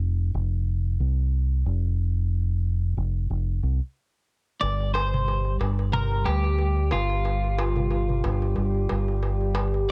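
Trip hop at 91 BPM with a light swing, dark and brooding, this excerpt opens on a round, punchy deep dub fingered electric bass playing alone until the guitar and darbuka arrive around 4.6 seconds. A clean, picked twelve-string electric guitar carries the melody with vintage 12-bit sampler grit and tape echo, while a crisp metal-shell darbuka struck with hard hands adds percussion. From 4.8 seconds a warbly, nostalgic tape-like pad holds sustained chords through chorus, phaser and its own reverb, set in a dark digital ambience as the harmony moves from F5 to G5.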